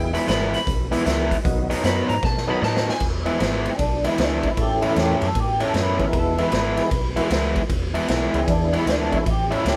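A swung shuffle in four rolls along with a gritty, laid-back electric blues feel in this clip cut from a longer piece. The raw garage drum kit sits up front, its boomy kick, medium-tuned snare, hi-hat, ride and crash saturated in a bright stone room with a pumping ambience and a rolled-off top, while a dark, round, foam-muted fingered bass holds the low end. A biting, overdriven guitar drives the riff with a picked attack, and a full, percussive tonewheel organ comps underneath through a slow rotary speaker with chorus vibrato and light overdrive before dropping out at 9.3 seconds. In the opening, a clean, scooped lap steel played with fingerpicks adds a sliding second line over the band, its short solo ending at 3.0 seconds as a drum fill rounds it off. A dark, lo-fi guitar through a small old amp, slightly broken-up, compressed and touched by phaser, then carries the melody from 3.7 seconds. 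The band plays live in one room, wrapped in light reverb.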